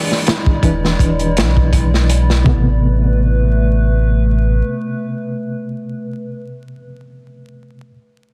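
A dense, heavily limited master dusted with vinyl crackle frames this short, hypnotic and melancholic trip hop fragment at 82 BPM in A harmonic minor, tuned to A4 = 435 Hz, with a lightly swung 16th feel. A reedy electric piano with fast tremolo, vintage sampler grit and tape echo plays accompaniment over a detuned, warbling pad with chorus and reverb, as the harmony moves from E7 to Amadd9 at 2.5 seconds. Saturated, gritty breakbeat drums with a tight kick sit up front until 2.6 seconds, while a round sine sub bass enters at 0.6 seconds with deep, sustained notes.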